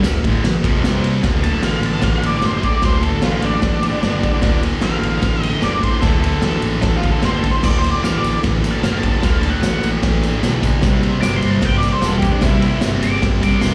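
A raw live club sound with light reverb carries this swaggering garage rock excerpt at 150 BPM, where a bright, double-tracked fuzz guitar riff and a gritty, up-front drum kit with punchy kick ride over an overdriven fingered bass, a jingly tambourine sits in the background, and a dark octave-fuzz lead guitar with slapback echo enters at 1.4 seconds to take a solo.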